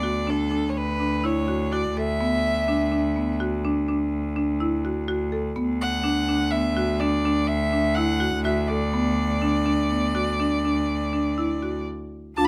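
A playful, restless contemporary chamber excerpt in 7/4 at 124 BPM in D major opens on a Dadd9 chord, with a clear, biting violin singing the melody over woody marimba arpeggios and a bowed cello playing a low, earthy bass, all three pausing at 11.9 seconds before a dark French horn sounds a single second line at 12.4 seconds, captured up close with light reverb.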